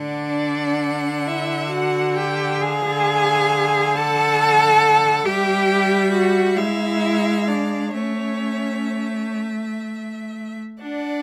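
A light reverb gives this 11.2-second portion of a slow romantic string quartet movement a gentle sense of space, with the bowed viola and cello sitting up front. In D major and a rubato 6/8 at around 41-46 BPM, a clear, focused first violin sings the tender, serene melody with vibrato, while a warm, expressive second violin adds a secondary line with portamento. Beneath them, a bright, intense viola supplies smooth-topped accompaniment, and a rich cello with a soft attack and its own portamento carries the bass through a progression from D through Ddim and Em/G to E7b9/G# and A.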